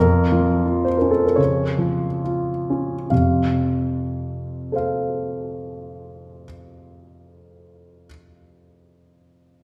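Rubato in 2/4 at a slow 32 to 45 BPM, the rhythm bends freely, and the opening slows down over the first 3.1 seconds. This romantic character piece for solo piano in F major, cut from a longer work, has a lyrical, hopeful mood. A single grand piano carries everything from F2 to F5, sounding intimate and natural, placed up front with the clatter of its action audible. The music begins on an unresolved F chord with a raised fifth before settling onto a plain F chord at 3.1 seconds, where a new section starts and runs to 9.5 seconds. A generous scoring-stage reverb with a 1.7-second tail surrounds the piano, giving it the airy glow of a church or concert hall, with the instrument tuned slightly below standard pitch.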